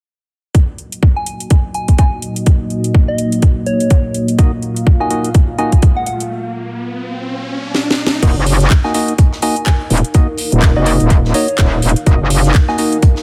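A dark, detuned analog pad and a tight, up-front electronic kick open this gritty, bouncy bass house excerpt in Eb minor at 125 BPM, with a swung 16th-note feel and a house kit adding cracking snare, handclaps, metallic hats and crash cymbal. A soft, pure FM bell melody enters at 1.2 seconds, its mellow tone roughened by vintage 12-bit sampler grit and trailed by digital delay, and at 4.4 seconds a hollow, organ-like percussive stab joins with chorus, delay and sidechain pumping. The pad, pumping against the kick, carries a filter sweep, and a riser builds through a break into a drum fill that leads into the next section. At 8.2 seconds the pad drops out and an aggressive, saturated FM wobble bass takes over in the low register, metallic and bright with overdrive and chorus. A very quiet acoustic funk kit with a high-tuned snare slips underneath, and from 9.1 seconds a faint, blurred granular cloud pad drifts in with its own built-in reverb, in an otherwise dry mix.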